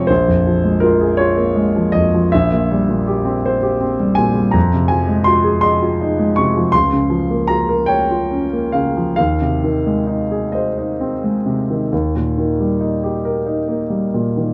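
Flowing in a gentle 12/8 with free, breathing rubato, the music moves at roughly 43-56 beats per minute counted in dotted quarters. This is a serene, tender Romantic nocturne for solo grand piano, drawn from a longer piece and running 14.5 seconds. The piano sounds smooth and vintage, sitting up front in the mix, and its range reaches from Bb1 up to Db6. The harmony opens on Bbm7 and C7/Bb before settling into Ab major from 4.6 s, passing through Fm7, Bbm/Db and Ab/Eb to rest on Eb. Light reverb and a dark, warm production give the sound a soft, intimate glow.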